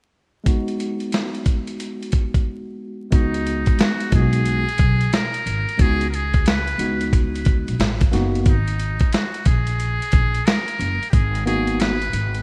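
A clean tine electric piano opens on G#m7, joined almost at once by a swung 90 BPM groove in 4/4 from an up-front, sampler-style soul drum kit with a thumpy kick, a medium-tuned snare, hi-hat and gritty vintage 12-bit crunch, in this mellow, cool jazz-hop excerpt in G# minor. After a brief break at 2.5 seconds, a woody, growly pizzicato upright bass and a breathy, whispered muted trumpet with tape echo enter together at 3.1 seconds, the trumpet taking an intimate jazz-style solo over chords moving from C#9sus4 through Asus2 to G#m9. The rough home-demo mix carries light reverb, vinyl crackle and lossy compression artefacts.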